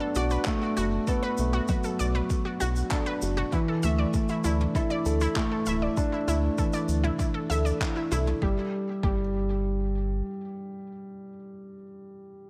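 A lightly reverberant, luminous and hopeful piano-and-strings electronica excerpt at 98 BPM in a straight 4/4, where a mellow felt-muted upright piano with audible action noise plays an up-front riff through digital delay from 0.0 to 12.5 seconds, a bright detuned unison pluck adds delayed, sidechain-pumped arpeggios, a round analog bass pumps beneath, and a deep layered electronic kick joins a brushed jazz kit with handclaps, shaker and toms over Bm7 and Dsus2 before the brush kit stops at 8.4 seconds and the kick at 9.2 seconds.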